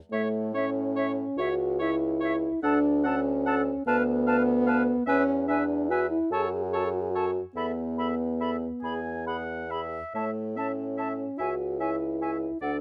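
From the first moment, a pure, distant silver flute with vibrato sings the melody over a warm oboe second line, a dark French horn up front, a clarinet in the background and a mellow, soft-attacked bassoon bass, in a serene, slow romantic wind-quintet movement in A major and 6/8 at 48 BPM with rubato, moving through A, C#m, Dmaj7 and Esus4 before returning to A and C#m, heard close and detailed with light reverb in a fragment cut from a longer piece.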